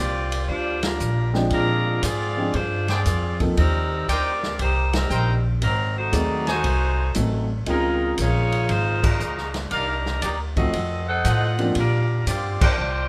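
A moderate large-studio reverb surrounds this short swinging big band excerpt, joyful in mood and set at 117 BPM in Bb major with a firm swing on the eighth notes. A bright, tight saxophone section with light vibrato carries the melody up front from the first second, while a woody pizzicato upright bass, also up front, anchors the low end beneath it. A vintage drum kit with dark cymbals, a punchy kick and a rolled-off top comes in at 0.3 seconds, and a natural-sounding grand piano adds accompaniment from 1.3 seconds. A brilliant trumpet section, tight and lightly vibratoed, punctuates the tune with stabs from 2.9 seconds. The full band hits accents at regular points through the passage, over rich harmony that moves from Bb69 through chords such as Ab7b9, Dbmaj9 and F7b9 before settling back on Bb69.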